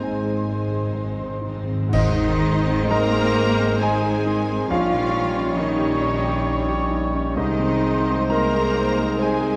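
A dark, reverberant concert-hall sound surrounds this lush, lyrical romantic movement for piano and orchestra in a swaying triple metre with a flexible, rubato feel, cut from a longer piece. Up front, a warm concert grand carries the melody with deep bass and long sustain, joined by a smooth, lightly vibrato violin section. Supporting lines come from a pure, hollow flute section set at a distance, a warm clarinet in the background, and a second, very quiet violin section with a rich, focused tone. Violas and a present bassoon fill in the accompaniment, a tight, close-miked French horn section holds mellow sustained chords, and clear cellos with distant double basses anchor the bass. Round, soft-mallet timpani open with a fill, and at 1.9 seconds a band accent arrives with bright clash cymbals and concert bass drum alongside a clear, soft-attacked trumpet, which keeps adding stabs to the end. 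The timpani fall away at 3.3 seconds and the cymbals and bass drum at 3.8 seconds, leaving the piano and orchestra to carry the phrase.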